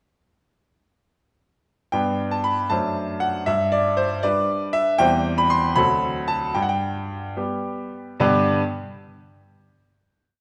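Elegant and graceful, this brief classical-period piano sonatina unfolds in G major at a gentle 71-79 BPM, counted in dotted quarters in a flowing 6/8. A bright grand piano plays alone from 1.9 seconds, its brilliant, smooth tone carrying a vintage character and long sustain as it sits up front in the sound. A single-line melody floats above bass notes and chords placed on the beats, ranging from D2 up to C6. The harmony moves simply from G through D7/F#, back to G, then to C/E and D7 before settling home on G, while the tempo slows down from 4.2 to 8.2 seconds. A final chord rings from 8.2 seconds into a reverberant recital hall, the lush space lingering after the piano stops at 8.6 seconds and bringing the whole piece to a poised close.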